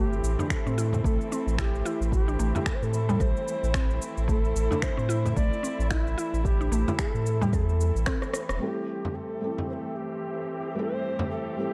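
Organic downtempo with a warm, earthy mood and a swung lilt, led by a bright, reedy Native American-style wooden flute with airy chiff and vibrato, trailed by tape echo, over veiled con sordino chamber strings whose filtered, pumping chords run throughout. A woody, detuned FM mallet-like pluck arpeggiates with chorus and delay, while a round sine sub bass with tube saturation, a deep overdriven electronic kick, overdriven electronic cabasa with finger snaps and rim click, and a large, dry frame drum played with hard hands drive the groove up to a drum fill and band accent around 8.5 seconds. At 8.6 seconds a felt-muted upright piano with audible action noise and 12-bit sampler grit takes over the accompaniment as a filter sweep moves across the strings, and from 9.2 seconds a faint, wind-like tuned noise texture hovers in the background of this dark, small-room production.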